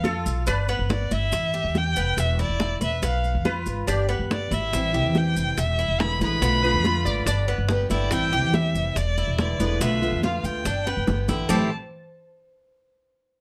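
Latin Cuban son and guajira in A minor at 142 BPM, this warm, nostalgic excerpt sets a dark, woody bowed violin melody with vibrato and plate reverb up front over thumpy pizzicato upright bass, metallic double-strung Cuban tres arpeggios, and soft-handed bongos, congas and grainy maracas in the background, while a buzzing, shimmering sitar adds a second line in brief passages and a fingerpicked steel-string acoustic guitar with audible finger squeak joins at 4.7 s, before a drum fill at 10.9 s leads into a new section at 11.5 s.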